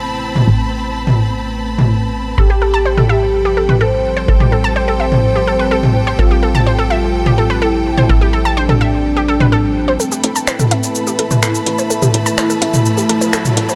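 Up-front techno drums with metallic hats, finger snaps, shaker and toms drive this dark, dramatic melodic techno excerpt at 126 BPM in A minor, over a punchy, wave-folded analog bass, a deep, detuned pad with chorus and a clear, biting string section, while from 2.4 seconds an expressive, vibrato-laden synth lead and a round, detuned pluck arpeggio with dub echo join in, both sweeping through filters in a build-up from 10.0 seconds as a background riser enters at 12.2 seconds.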